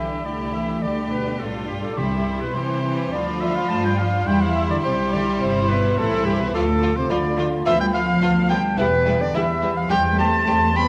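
Lively and graceful, this quick classical-period movement for symphony orchestra moves at 106 BPM in 4/4 with a flexible, rubato feel in C major, tuned slightly high. A clear, intense violin section carries the melody in a narrow middle range, while a second, very quiet violin section adds a close, expressive line beneath it. The oboe, clarinet and a pure, hollow-toned silver flute set distant in the mix weave supporting lines above, with a dark trumpet adding background stabs and a mellow French horn section holding sustained chords. A focused viola section fills in the accompaniment, and warm cellos with gliding portamento join smooth, even double basses to anchor the bass. The timpani sounds only briefly, from 2.0 to 2.8 s, as the harmony settles on C, and a moderate scoring-stage reverb gives the ensemble a sense of space in this short cut from a longer piece.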